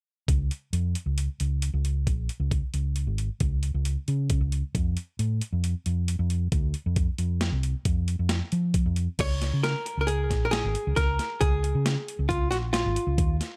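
A round, punchy hollow-body fingered electric bass drives this bright, intricate progressive instrumental fragment at 135 BPM in 5/4 and Db major, entering together at 0.3 s with a gritty, compressed sampler-style boom bap kit with a thumpy kick, medium-tuned snare, hi-hat and crash, while a clean, dark, picked archtop guitar carrying a tape-echoed melody enters at 9.2 s, all set close and up front in a dry room.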